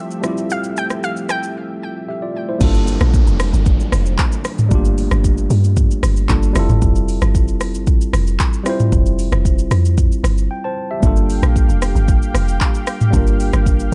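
Amapiano at 114 BPM in G dorian, a late-night, soulful excerpt cut from a longer piece, opens with a filter sweep as a round, detuned analog pluck with chorus and delay sings briefly over a worn, slightly out-of-tune tine electric piano and a thick, warbling pad, while a tape-warm, gritty, produced drum kit with a deep kick, metallic hats, handclaps, rim clicks, shaker and toms enters at 0.1 seconds. At 2.6 seconds the drop arrives as the pad falls away and a deep, percussive log drum bass with a fast attack and dark decay takes the front alongside the drums, with an electronic downlifter sinking underneath until 6.8 seconds. The harmony moves between Fmaj9 and Gm7, and after a short break the lush pad returns at 11.0 seconds, all in a dark, dry production.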